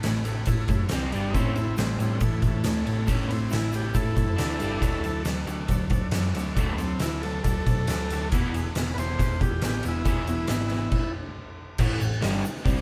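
An oversized, low-tuned drum kit sits up front in this swaggering, raw garage rock clip, its boomy kick, fat snare and dark cymbals saturated and gritty inside a bright, pumping stone room. A crunchy, double-tracked electric guitar pounds out a picked riff over a round, dark hollow-body bass, while a very quiet, grainy tube shaker adds texture underneath. A vintage, buzzy combo organ holds overdriven sustained chords. A second organ part carries the melody from 1.3 seconds, soaked in heavy vibrato and set in the background. The groove is straight and driving, and the band sounds like it is playing live together in one room with moderate reverb. The band halts in a stop at 10.9 seconds before crashing back in on an A5 chord at 11.8 seconds, where this cut from a longer piece ends.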